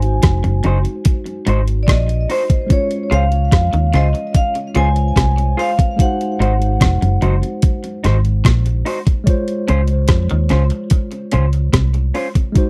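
A sweet, romantic lovers rock reggae excerpt in Db major at a straight 73 BPM opens with a dark, ringing vibraphone melody with slow motor vibrato and tape echo, over a worn, slightly out-of-tune tine electric piano with light overdrive, a bright, twangy guitar riff in the background, a round, foam-muted bass up front, and a thumpy, overdriven 80s drum machine of kick, hi-hat and rim click. At 0.6 seconds a slightly broken-up, lo-fi guitar through a small old amp adds compressed stabs, and the vibraphone falls away at 7.2 seconds while the groove keeps cycling between Ab7 and Dbmaj7. The sound is dry and close, in a 1970s studio style.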